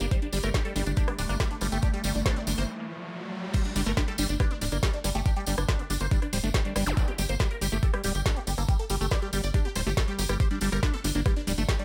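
An overdriven, knocking electronic kick sits up front in this hypnotic psychedelic trance excerpt, joined by a garage drum kit with a woody snare, metallic hats, rim clicks and crashes, also overdriven, plus a jingly acoustic tambourine. Beneath it, a tight, punchy sequencer bass with a dark, ring-modulated pluck drives the low end, while a squelchy, resonant acid bass riff runs through phaser, delay and sidechain pumping. Up top, a huge, detuned supersaw lead carries the melody with vibrato, phaser, dub echo and pumping, its sustained sound compressed and threaded with a noise layer. A swarming, granular drone with vintage 12-bit sampler grit holds tense chords in the background during the opening, as an electronic riser builds through a short break, and the drop lands at 3.5 s, where the drone falls away. A brief zap flicks past at 6.9 s, and the mix stays dry throughout.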